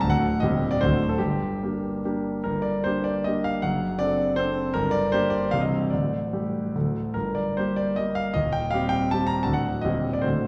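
Classical romantic triple-time dance for solo concert grand piano, capricious and wistful, moving with a free rubato and dotted rhythms through a brief passage cut from a longer piece. The piano sounds intimate and vintage, with deep bass, a smooth tone and audible action noise, placed up front even as a wet recital-hall reverb suggests a listener seated further back. Its harmony circles around dominant tension, settling on G minor at 1.2, 4.7 and 7.2 seconds before the passage breaks off unresolved.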